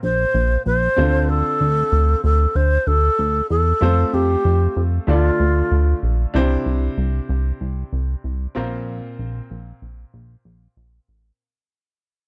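An airy, unsteady alto flute with vibrato carries the melody up front through digital delay until 6.0 s, over a glossy, pulse-wave synth bass with chorus and a vintage concert grand piano with tube saturation, giving this moody, nostalgic 1980s-style pop excerpt a dark, dry sound that fades out from 6.3 s.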